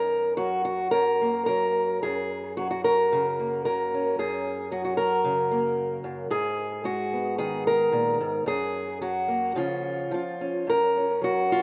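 A fingerpicked acoustic archtop guitar sits up front from the very start, playing a gentle, nostalgic folk piece alone with a loose, rubato feel across this 11.6-second cut from a longer work. Its warm tone carries audible finger squeaks and analog delay. A long, wet plate reverb surrounds it, and the rough home-demo mix lends an intimate, unpolished character.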